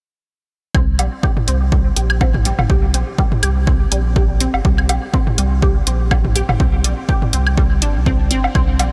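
A lightly reverberant mix opens this cool, clinical minimal techno excerpt at 123 BPM in 4/4, with a 55% swing on the sixteenths over a C5 harmony. From 0.7 s, a punchy, tape-warm analog kick and a thick, saturated sub bass with sidechain pumping sit up front, while overdriven electronic woodblock and toms trail a diffuse ambient delay; an up-front electronic hi-hat joins at 1.0 s. Above them, a squelchy, resonant blip pluck riff of detuned square and sawtooth waves rings bright through phaser, ensemble chorus, tape echo and its own sidechain pumping.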